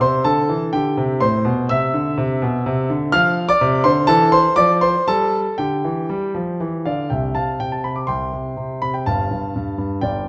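A clear, up-front concert grand plays alone through this short, cheerful and elegant cut from a classical-period sonatina in C major, moving at 124 BPM in 4/4 with a rubato feel and tuned to A4 = 441 Hz. Its deep bass and long sustain bloom into the wet reverb of a recital hall within a dark production, as the harmony passes from C through A minor, F and a suspended D chord to G before a new section begins at 7.1 seconds on open C and G chords.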